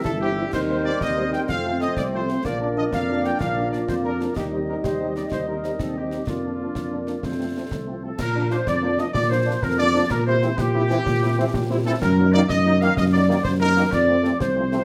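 Set in a straight 6/8 lilt, this spirited, festive military-style march for wind band is cut from a longer piece. A tight, close-miked trumpet section carries the melody with light vibrato and a soft attack, while a woodwind section adds a smooth-topped second line, a mellow tuba holds the bass up front, and concert snare drum, concert bass drum and dark-toned clash cymbals sound close and dry. In the background, a distant, roomy trombone section holds dark sustained chords, a French horn section plays accompaniment from 0.2 seconds, and a solo euphonium adds a second line until 7.9 seconds, all set in a wet large-studio reverb as the march moves into a new section at 8.2 seconds.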